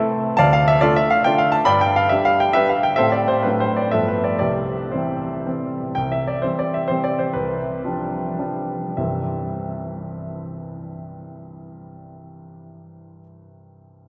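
A clear grand piano plays alone, up front and present, in a romantic classical dance in triple time with dotted rhythms and a graceful, rustic mood. The playing is freely paced with rubato, spanning from deep bass notes to the upper middle of the keyboard. The harmony moves from Dm through G and Am7 to a settling on C at 4.4 seconds. From 5.2 to 9.0 seconds the music slows, easing into a new passage before returning to C at 9.0 seconds. The piano sits in a vast, echoing cathedral space whose long, wet reverb trails behind every note, and its top end is softened. This fragment is cut from a longer piece.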